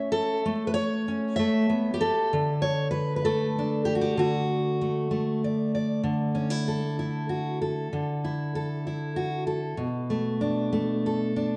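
In a 6/8 at 64 BPM with a straight feel, this nostalgic folk excerpt features a single fingerpicked steel-string jumbo acoustic guitar in D major, moving from A to D and then, from 6.0 seconds, through Dsus2 to Bm7. The guitar sits up front with fresh strings and a full-bodied tone, touched by a slapback echo. A concert hall reverb and a dark, warm production surround it.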